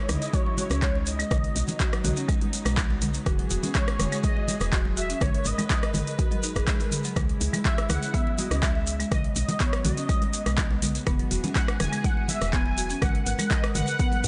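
An up-front, overdriven electronic kick drives this earthy afro house excerpt at 123 BPM alongside a gritty afro-pop kit of handclaps, metallic hi-hats, rim clicks and toms, very quiet bright congas, a grainy shekere in the background, a buzzing hard-mallet marimba playing dry arpeggios with 12-bit sampler grit and delay, a round, woody FM bass and a rich bowed string section, both pumping with the sidechain, while a smooth, expressive sawtooth lead with chorus and vibrato carries the melody over a looping C#m–B–Eadd9–G#m progression in a small room.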